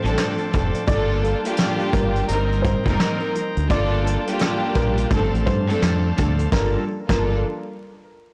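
A blown-out, overdriven small-room recording with vinyl crackle carries this gritty, dark boom-bap hip-hop excerpt in G minor at 85 BPM with a swung 16th feel, where a deep, round dub fingered electric bass with tube saturation and a brush drum kit with a fat snare, tight soft-clipped kick and 12-bit sampler grit sit up front beside a bowed, sul tasto string section, a thick, gritty tonewheel organ holds chords in the background, and a woody, mellow upright piano with audible action noise and delay enters with the melody at 0.9 seconds over chords moving from Dm7 through Gm9 and Eb6.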